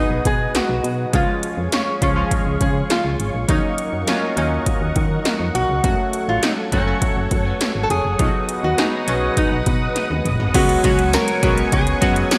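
A nasal, metallic resonator slide guitar, played with fingerpicks and treated with tape echo, carries the melody in this uplifting, nostalgic 1980s-style pop fragment at 102 BPM in Db mixolydian, over glossy chorused retro synth keys, a silky string machine, a round FM bass and punchy electronic pad drums with gated snare and toms, until a drum fill at 10.0 seconds leads into a very quiet, crunchy overdriven guitar entering at 10.5 seconds, the whole set in a moderate concert hall reverb.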